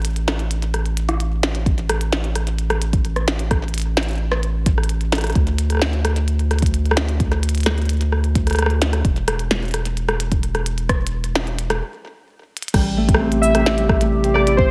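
This recording sits in a digital ambience, with the drums re-recorded in a large room and the bass and glitchy kit placed up front. Cut from a longer piece, this cerebral, melancholic IDM opens on a round, dark analog bass with tube saturation and a sustained, sine-like tone. Beneath it runs a glitchy electronic kit of tiny snare, clicky hi-hats, cabasa, rim click and crash cymbal, treated with digital delay. A deep electronic kick joins at 1.7 seconds, and the straight groove runs until a stop at 11.8 seconds, broken by a drum fill. At 12.7 seconds the music settles onto an Am7 chord as a fingerpicked, ringing Celtic harp plays arpeggios through digital delay. A nostalgic tape-like pad follows with slow-attack chords, its chorus, 12-bit sampler grit and sidechain pumping giving a mellow, lo-fi haze, while detuned, warbling synth keys add a brief, decaying melody with chorus.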